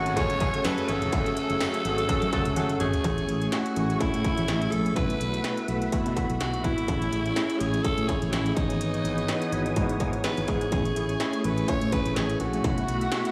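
This is a romantic, nostalgic slice of 1980s-style pop at 125 BPM in 4/4, with a light swing on the sixteenths and a dreamy sound soaked in plate reverb. A raspy, gritty alto saxophone carries the melody up front, its scooped notes and vibrato riding a tape echo across the full 13.3 seconds. Beneath it, a clean tine electric piano shimmers with medium tremolo through a combo amp, while a mellow string machine holds soft-attack viola chords in the background with ensemble chorus. A growly fretless electric bass anchors the low end, and an industrial drum kit with distortion puts a distorted kick, clanging snare, crisp hats, tambourine and toms up front. In the opening seconds a very quiet crunchy overdriven guitar and a tight, smooth-topped horn section add brief colour, the horns playing stabs and the guitar dropping out at 3.1 seconds, just after electric piano and drum fills lead into a second section built on Amaj7, B7sus4 and Emaj7/G#.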